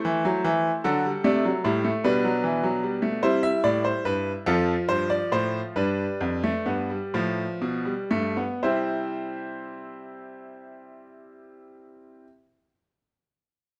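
A brilliant, up-front grand piano opens this excerpt of a lively yet stately baroque-style four-part fugue in C major, moving in 6/8 at 39-51 BPM counted in dotted quarters and slowing from 2.0 to 8.6 seconds as its harmony passes from A minor through D7, G/B, C, F and G7 to arrive on C, the instrument's natural tone carried by a moderate stone-room reverb.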